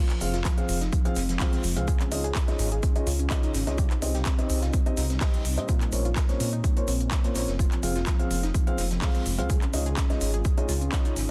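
Expansive and emotional, this excerpt of progressive house moves at 126 BPM in straight 4/4 over an Fm, Dbadd9, Cm and Bbmadd9 progression, anchored by a punchy, overdriven electronic kick up front and a deep, rumbling detuned saw bass that pumps against the sidechain. A big-room dance kit adds crisp hats and handclaps, while an acoustic jazz kit with a medium-tuned snare, shaker and rolled-off top sits in the background. A soft, round pluck plays chorused, delayed arpeggios from the start, felt-muted upright piano stabs bring audible action noise and 12-bit sampler grit, and from 1.3 seconds a shimmering, ethereal granular pad holds sustained chords behind everything in a dense, heavily limited master with small room ambience.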